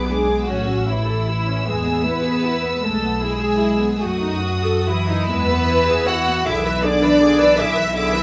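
A close, intimate studio sound with light reverb frames this elegiac excerpt from a slow romantic movement for string orchestra in 6/8, shaped by free rubato. High in its register, a dark violin section carries the melody with light vibrato and a smooth top, while a second violin section, rich and up front with vibrato, sings a second line beneath it over a pure, floating viola accompaniment. Cellos and double basses share a warm bass, and every section bows sul tasto with a soft attack, lending the melancholic passage a soft-edged sound.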